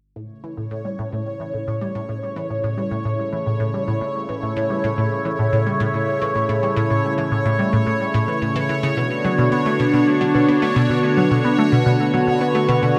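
A squelchy, resonant blip pluck riff with phaser and tape echo sits up front in this mysterious, hypnotic ambient excerpt at 109 BPM, fading in alongside a swirling, detuned phased analog pad whose sustained chords move from A to Bm at 9.0 seconds, while a bubbling stepped-filter texture with random filter steps and a long release enters at 0.7 seconds, the whole mix set in a wet plate reverb.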